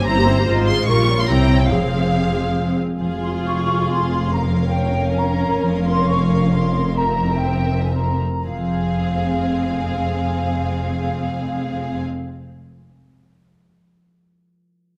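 Moving in a rubato 3/4 at 114-149 BPM and slowing between 5.0 and 8.5 seconds, this urgent, stormy classical excerpt in F minor sets a distant, lush violin section melody over a smooth, rich second violin line, expressive viola accompaniment with portamento, ringing harp arpeggios, bowed cello bass in the background and woody double basses, while a pure flute section with rolled-off highs joins at 3.2 seconds, all in a recital hall with moderate reverb.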